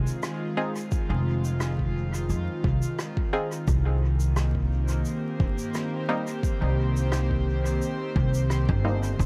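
An airy, breathy pad and a woody upright bass open this hazy, meditative ambient dub fragment at 87 BPM in 4/4, with a light swing on the sixteenths. The pad holds soft, detuned sustained chords dressed in chorus, with a ring-modulated noise layer, moving from Fm7 to Cm7 at 3.7 seconds. The pizzicato bass sits up front, thumpy and dark, with tube saturation. A faint shaker and rim click played with brushes comes in almost at once, trailing dub echo, and a muted, filtered chord stab with a plucky, decaying sawtooth tone joins at 0.6 seconds, carrying both chorus and dub echo. A deep, layered electronic kick arrives at 0.9 seconds, and the whole piece has a dark, warm production in a small room, with vinyl crackle beneath.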